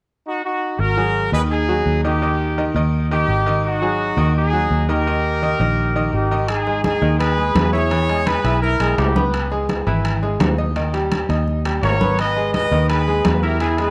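A straight 4/4 pulse at 169 BPM drives this passionate, danceable salsa excerpt in G# harmonic minor, tuned slightly low to A4 = 436 Hz. A punchy, tight horn section carries the melody up front from 0.3 s, its lines given a slapback echo, and it drops out briefly before returning for the closing bars. A dark, round, foam-muted fingered electric bass sits close in the mix under a bright, worn concert grand piano whose intimate sound carries audible action noise and deep low end. The opening moves between G#5 and D#, and at 6.5 s the harmony opens into G#m, E, C#m7 and D#. Here soft-handed congas with a ringing, medium tuning join in the background, along with metal-shell timbales heard from a distant, large room. Light studio reverb ties the parts together.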